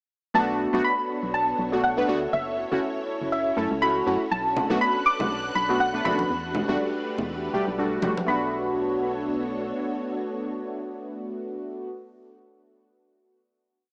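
Smooth and hypnotic, this short deep house piece in B minor at 121 BPM, with a gentle sixteenth-note swing, sets a dark, round synth pluck melody with chorus and delay over silky string-machine chords and up-front, detuned sawtooth key stabs with phaser and tape echo, while a hollow, organ-like FM bass riff runs until 9.7 s, ringing congas and a bright, held high string-pad note join from 4.6 to 8.3 s, and a final Bm7 chord closes the piece in a lush hall reverb with a small-speaker tone.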